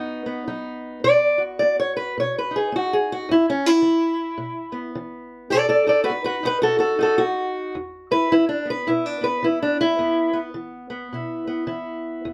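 A loping swung-eighth groove in 4/4 drives this rollicking, gritty acoustic country blues excerpt, carried entirely by a fingerpicked steel-string guitar playing solo across its full 12.3 seconds. The parlour-style guitar sounds dark and boxy, sitting up front as it moves between B and E5 chords, and a repeated passage returns at 7.8 seconds. A moderate studio reverb surrounds the playing, and a faint mains hum lingers underneath, lending the recording a lived-in roughness.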